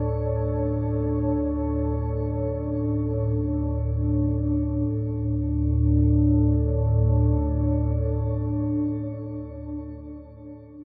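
Soaked in a huge, cavernous reverb with a seven-second-plus tail and the soft grain of cassette tape, this dark, ominous ambient fragment drifts in free time, cut from a longer piece. Underneath, a deep rumbling drone built from triangle and sawtooth tones sits up front in the low register, its slow attack and long release giving it a heavy, brooding presence, with a phaser and built-in reverb colouring its sound. Above it, a moody pad of detuned sawtooth unison layered with a sine sub octave holds sustained chords, beginning on a D5 chord, its mellow body thickened by chorus, built-in reverb and a glistening shimmer reverb. Both parts sound from the very start, with the drone ending at 9.8 seconds and the pad lingering until 10.2 seconds. The music shifts into a second passage at 4.9 seconds, keeping its suspended, foreboding atmosphere throughout.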